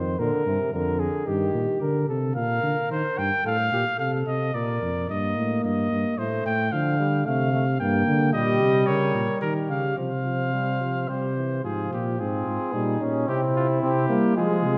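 In a straight 3/4 at 110 BPM, this imitative canzona for brass ensemble in E-flat major moves with a lively yet stately step, cut from a longer piece. The close-miked, dark bass trombone holds the bass throughout, up front, with a light vibrato. A distant, roomy trombone supplies the accompaniment. The trumpet carries the melody from 2.4 seconds, up front with a smooth top and gentle vibrato. The mellow, punchy flugelhorn sings the second line but rests from 5.1 seconds, the moment the trombone returns, until 8.3 seconds. Harmonies pass through minor and diminished colours toward a closing C chord, and a wet scoring-stage reverb wraps the ensemble in a dark, warm production.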